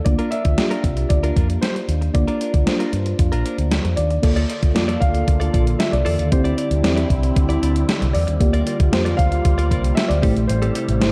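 1980s-style pop with an urgent yet nostalgic mood, this short excerpt opens on a round, chorused FM electric piano under a polished baby grand melody with a digital delay. A clean, direct-recorded electric guitar riff, a dark picked bass through an envelope filter, and a thumpy, up-front 12-bit drum machine with crash, hi-hat and snare drive the passage. A swirling, detuned analog pad with phaser and chorus enters at 4.6 s, adding sustained chords over a dark, lightly reverberant production.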